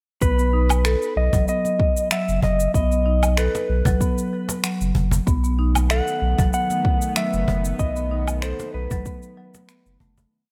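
This short organic downtempo piece opens at 0.2 s on a B7 chord, with its groove already in motion at 95 BPM in 4/4 and a light 16th-note swing. A woody marimba struck with medium hard mallets loops a dark, smooth 16-step arpeggio pattern through a low-pass filter sweep and digital delay. Beneath it sits a round, sine-like sub bass playing a syncopated riff with sidechain pumping, while a deep, soft electronic kick anchors a layered beat of cabasa, low woodblock and finger snaps. A close, snappy cajon joins at 0.7 s with slaps and bass tones. Up front, a clean, compressed lap steel guitar carries a motif-based melody of call phrases, using slide and volume swells through digital delay. At 5.6 s a tense, string-like drone enters quietly with sustained detuned chords, vibrato and its own reverb, deepening the mystical, warm mood as the piece fades out in a light room ambience.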